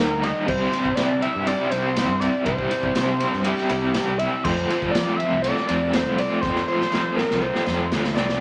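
Kaleidoscopic and trippy, this short psychedelic rock passage is cut from a longer piece and moves at a straight 121 BPM in 4/4, tuned slightly flat of standard pitch. A screaming, guitar-like synth lead carries the melody from the first moment, its distorted sawtooth-and-square tone bright and sustained with vibrato. Beneath it a crunchy, double-tracked overdriven guitar sits up front with a tremolo-shaded riff, while a growling fingered bass, overdriven and amped, anchors the low end. A raw garage drum kit joins at 0.2 seconds with a boomy kick, dark cymbals and a saturated, rolled-off character in a pumping small room, capped by a drum fill from 6.4 seconds. A jingly vintage tambourine sits very quietly in the background as the harmony shifts from C to F at 4.4 seconds, all of it set in a moderate large studio reverb with vinyl crackle.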